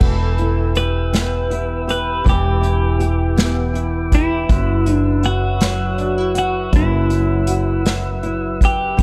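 This aching, melancholic six-eight pop ballad in E minor opens at once with a full band at 54 BPM, a dark, polished acoustic drum kit played with bundle sticks sitting up front beside a round, hollow-body fretless bass. A bright, twangy twelve-string electric guitar carries the picked melody over a double-tracked, fingerpicked nylon-string guitar with audible finger squeak, while a lightly overdriven tonewheel organ holds sustained chords through a slow rotary speaker, its key click just audible. The harmony moves from Em to Bsus4/F# at 4.5 seconds in this dark, warm studio sound, cut from a longer piece.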